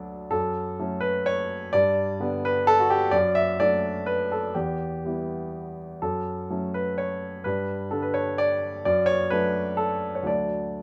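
A warm grand piano carries this short neoclassical minimalist fragment alone, spanning from D2 up to E5 with a present, polished tone and short sustain that sits up front. The mood is peaceful and tender, moving in 3/4 with a rubato feel at roughly 118-133 BPM and tuned slightly low to A4 = 437 Hz. The harmony circles through F#m, G, D/F# and Em, then repeats the first three chords before settling on D at 10.3 seconds. A light reverb gives the piano a gentle sense of space. Cut from a longer piece, the passage runs from 0.0 to 10.8 seconds.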